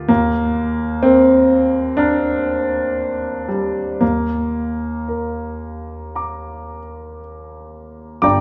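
Classical impressionist solo piano sets a nocturnal, wistful mood in this brief fragment cut from a longer piece. A grand piano plays alone from 0.0 to 8.4 seconds in 4/4 at a slow 55-64 BPM, its rubato feel letting time stretch and breathe. The harmony rests on an Ebsus2 chord at the opening before settling onto Eb5 at 4.0 seconds, with the playing spanning a range from G1 up to F6. The piano's tone is warm and present, sitting up front with a long sustain. A moderate recital hall reverb surrounds it, giving the sound the airy depth of a church or concert hall.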